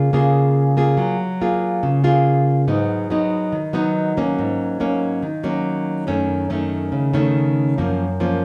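A solo nylon-string guitar, fingerpicked in a classical style with audible finger squeak, plays this breezy, relaxed bossa nova excerpt at 141 BPM in 4/4, moving through chords such as Bbm7/Db, Gbmaj9, Abm7, Ab9sus4 and Gbm6 to land on Gbmaj7, its warm, up-front tone bathed in a wet, large studio reverb that places the listener further back in the room.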